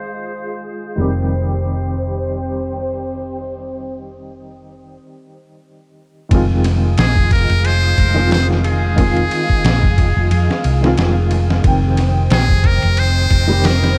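Brooding and hypnotic, this trip hop excerpt moves at 90 BPM in F minor with a lazy sixteenth-note swing, circling between Fm7 and Cm/F. A dark upright piano carries the accompaniment throughout, mellow and woody with audible action noise and a slightly detuned edge, shimmering with tremolo and tape echo. Beneath it a hollow-body electric bass sits up front, round and amped, while a vintage string machine voicing cellos spreads sustained sawtooth chords with ensemble chorus and a warbling, slow-attack glow, its filter sweeping through the opening 6.3 seconds as a brief break arrives at 5.0 seconds. At 6.3 seconds a sampler-style drum kit enters, compressed and pitched down, with a thumpy kick, medium-tuned snare, hi-hat and ride carrying a gritty, tape-softened character. A metal-muted trumpet, buzzy and thin with light vibrato and a coating of 12-bit sampler grit, flickers at the very start and returns at 7.0 seconds to sing its solo line through tape echo. 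The mix is dry in room sound yet heavy with echo, rolled off by a low-pass filter that keeps the whole atmosphere murky.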